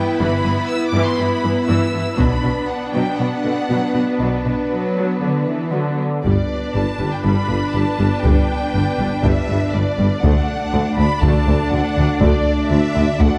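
This dark, epic orchestral film cue, cut from a longer piece, opens with the full string body: a warm, lush violin section carrying an expressive vibrato melody with a soft attack, a second, more distant violin line beneath it, and rich viola, cello and double bass sections filling out the accompaniment and the low end. A dark, roomy French horn section holds sustained chords in the background, giving the harmony a shadowed weight in a straight 4/4 at 120 BPM. A close, acoustic taiko ensemble strikes briefly with heavy sticks at 2.2 seconds. It returns at 6.2 seconds to drive the rest of the passage as the music moves into its second section. Just after, at 6.3 seconds, a punchy solo tuba joins the double basses in the depths, thickening the foundation. The whole sits in a moderate scoring-stage reverb with a dark, warm production that keeps the strings smooth and the low brass and drums imposing.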